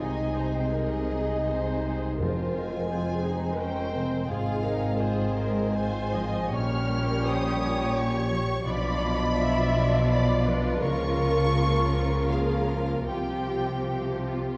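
Solemn and yearning, this slow romantic orchestral passage in 3/4 moves with rubato at 74-87 BPM: a violin section sings a smooth, lightly vibrato melody above a close, expressive second violin line and a lush viola accompaniment with portamento, cellos with a soft attack and rich, even double basses carry the bass, mellow, distant French horns hold sustained chords while a bright, ringing concert harp plays arpeggios in the background, a round, very quiet timpani note sounds at 2.2 s, and a dark, warm scoring-stage reverb surrounds the ensemble.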